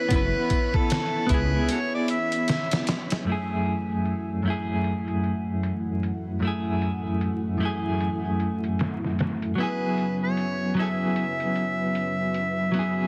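An overdriven, amplified harmonica carries a jazz-style solo melody up front, with light vibrato, scooped notes and tongue slaps, in this cinematic, smoky trip hop passage cut from a longer piece. It drops out at 2.8 seconds and returns at 9.6 seconds. Beneath it, a clean, dark electric guitar is picked throughout, treated with tremolo, a low-pass filter and vintage 12-bit sampler grit. A string machine voiced as cellos holds mellow, slow-attack chords with ensemble chorus and a sub octave, while a deep, rumbling detuned saw bass appears only briefly before stopping at 1.7 seconds as a break begins. The sampler-style drum kit is pitched down, compressed and tape-warm, with a thumpy kick, a medium-tuned snare and low-pass filtered hats swung on the sixteenths. Light digital reverb, heavy radio-style compression and vinyl crackle give the mix a lo-fi haze.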